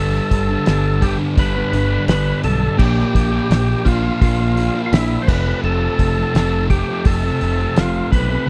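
A straight, driving 4/4 groove anchors this sunny classic rock passage, cut from a longer piece and moving through G, Bb and F. Up front, a cloth-damped, thuddy drum kit with a fat snare, tight kick and dark cymbals sits under a growly, bright fingered electric bass. A crunchy, picked overdriven guitar and a sludgy distorted guitar set further back share the riff, while a gritty tonewheel organ with percussive third-harmonic attack, slow rotary speaker and slapback echo carries the melody in a dry, close 1970s-style studio sound.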